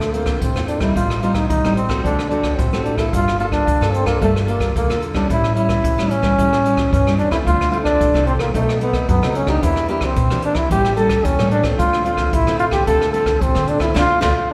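A straight 4/4 samba-and-choro groove at 111 BPM moves through D minor, with a brushed jazz drum kit up front, punchy kick, medium-tuned snare and rim clicks, while a woody pizzicato upright bass sits in the background. Over fingerpicked classical nylon-string guitar, complete with audible finger squeak, a solo trombone carries the yearning, bittersweet melody in a jazz style with warm vibrato. The whole band lands a shared accent at 13.9 s in this short cut from a longer piece, all bathed in the lush reverb of a church or concert hall.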